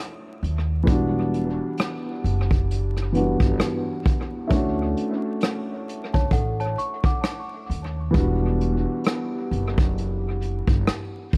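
A small room, heavy echo and vinyl crackle set the scene for this short, cosy and nostalgic lo-fi hip hop fragment, moving at a relaxed 66 BPM in 4/4 with a light swing on the sixteenths. A mellow, woody upright piano carries the accompaniment from the start, its audible action noise and vintage character softened by cassette tape color, a low-pass filter and dub echo as it moves between Dmaj7 and Em7. From 0.4 seconds an upright bass joins with a thumpy, gut-string pizzicato tone sitting up front. A vintage brush drum kit with a punchy kick, hi-hat and rim click, its top end rolled off and touched by dub echo, enters alongside the bass. At 6.1 seconds a small celesta adds a brief, bell-like second line that is sweet and delicate, filtered and echoed, before dropping out at 8.1 seconds.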